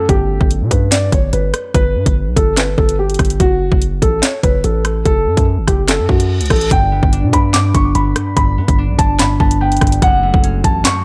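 A dark, mellow concert grand piano carries the melody up front in this ominous drill excerpt. Its boxy, intimate tone reveals audible action noise and deep bass, softened by a low-pass filter and trailed by delay. The track moves at 145 BPM in 4/4 with a half-time feel, tuned to A4 = 439 Hz, and the harmony shifts between G and F#m. A fingerpicked concert harp supplies ringing, filtered accompaniment, dropping out at 3.0 seconds and returning at 6.7 seconds as the second section begins. Underneath, a punchy, heavy 808-style bass with a sine core, a noise layer and saturated, fast-attack, decaying notes holds the low end, while the electronic drill kit sits up front with a hard-clipped kick, sharp snare, bright hi-hats, handclaps and rim clicks. A brief electronic reverse cymbal leads into the new section, and digital ambience surrounds the mix.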